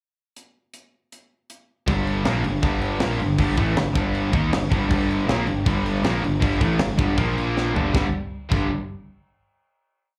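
A tight, gritty metal drum kit opens this angry, raw punk rock piece with a pickup bar at 0.4 s, then at 1.9 s a punchy fuzz bass pushes up front in driving eighth notes that double the power-chord riff of three bright guitars (one crunchy and overdriven, one compressed and distorted with slapback echo, and one double-tracked high-gain with the same echo), all heard through a live club PA with light reverb until a drum fill leads into the final chord at 7.9 s.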